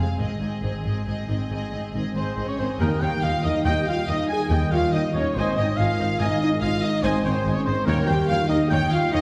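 Cinematic orchestral music in 12/8 at 94 BPM in Eb mixolydian, soaring and triumphant, cut from a longer piece and moving through Ab and Eb chords to an Eb7, with a build-up over the first 2.8 seconds. Violins carry the melody over a second violin line, violas, sustained trombone chords, and cellos and double basses on the bass, the strings all bowed with vibrato, while mellow French horns join at 2.1 seconds, flute and oboe add a second line at 2.2 seconds, and a very quiet tuba reinforces the bass from 2.8 seconds. Timpani strike with medium mallets near the end, and the whole ensemble sits back in a wet scoring-stage reverb.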